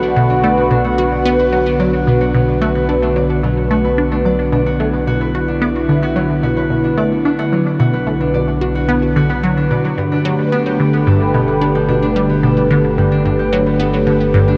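Hypnotic and expansive, this excerpt of ambient, sequencer-driven space music moves at 110 BPM in a straight 4/4, with a sweeping, evolving resonant pad holding sustained chords up front while a fingerpicked concert harp rings out arpeggios through tape echo. A juicy, squelchy blip pluck plays a bright riff with phaser and tape echo, and a round, deep analog bass anchors the low end as the harmony moves from Bm to Gadd9 at 10.0 seconds. The whole excerpt sits in a huge, wet reverb with the worn, warbling pitch drift of old cassette tape.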